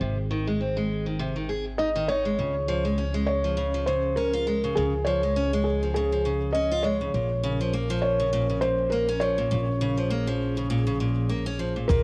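A warbling, nostalgic tape-like pad with a filter sweep holds sustained chords in the background as bright picked steel-string acoustic guitar arpeggios and woody pizzicato upright bass open this pastoral, playful folktronica excerpt at 101 BPM with a light 16th-note swing, moving through Ab, Db and Bbm while a soft, felt-muted upright piano with audible action noise and tape echo carries the melody from 1.8 seconds, and a thumpy, overdriven electronic kick and a faint shaker arrive only at 11.9 seconds, all within a hazy home-cassette sound.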